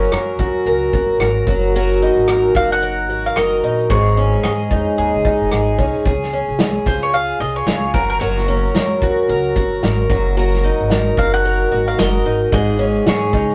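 This sunny, carefree acoustic pop fragment opens with all four parts together: a bowl-back mandolin, a twelve-string acoustic guitar, an upright bass and an unplugged drum kit. The guitar sits up front and carries the accompaniment, its fresh, picked strings sounding shimmering and octave-doubled with a boxy, parlour character. Above it the bright mandolin, with its doubled strings, carries the melody, while the pizzicato upright bass gives a woody, thumpy foundation. The drums sound distant and roomy, played with bundle sticks on a punchy kick, a medium-tuned snare, rim clicks and shaker, all in an easy swung 4/4. The harmony cycles through Gb, Ebm/Gb, Absus4 and Db, returning to Gb at 7.9 seconds before the clip is cut off at 13.5 seconds. A short, wet booth ambience and a rough rehearsal-room quality give the recording a casual, close-knit feel.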